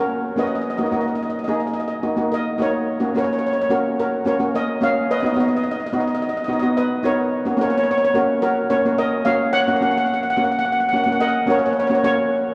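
Two double-seconds steel pans open together, one carrying the melody between F#4 and F#5 and the other playing accompaniment from A#3 to G#4. This festive, bouncy calypso moves at 108 BPM in a straight 4/4, in F# major tuned to A4 = 441 Hz. The melody pan is struck with soft rubber sticks for a mellow, gentle tone. The accompaniment pan uses medium rubber sticks and sounds airy. Both pans are metallic and shimmering, and both sit up front. A drenching cathedral reverb with a 5.5-second decay places them in a vast, echoing space over a small-room ambience, while the harmony moves through F#/A#, D#m, F# and B before returning to F#/A#. This clip is cut from a longer piece, with the pans playing until about 12.5 seconds.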